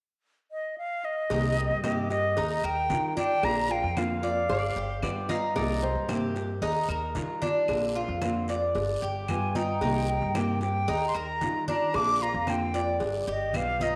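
Cuban son and guajira at 113 BPM in C minor, danceable and nostalgic, this excerpt opens with an airy, vibrato-laden concert flute up front with slapback echo, joined at 1.3 seconds by fingerpicked nylon-string guitar, a metallic double-strung tres playing arpeggios, a growly pizzicato upright bass, and background congas, cowbell and raspy guiro, with woody claves following at 1.8 seconds, all cycling through Cm7, Ebadd9, Bbadd9 and G7, while a second nylon-string guitar line with finger squeak slips in from 4.5 seconds, all bathed in a wet echo-chamber reverb.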